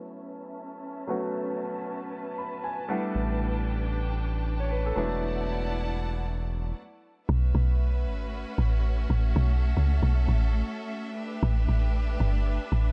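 Warm and relaxed, this dry, dark amapiano excerpt opens with polished concert grand piano and bowed, vibrato-rich studio strings behind a filter sweep, adds a brief piano fill and a round analog bass before a short stop at 6.8 seconds, then drops at 7.3 seconds into a deep, percussive, up-front log drum bass beneath the lingering strings over suspended ninth chords.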